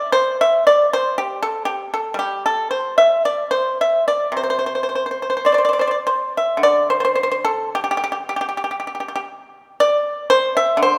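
Pastoral and flowing, this short passage of Chinese traditional music is lifted from a longer piece and given entirely to a solo pipa. The playing moves freely in rubato around 52-59 BPM within a 4/4 frame, set in the C gong mode. Plucked with fingerpicks, the acoustic pipa sounds percussive and up front, its close, dry attack spanning C3 to E5. A moderate concert hall reverb surrounds the performance, lending the space a gentle sense of depth. The music shifts into a new section at 6.6 s and carries on until the passage ends at 11.0 s.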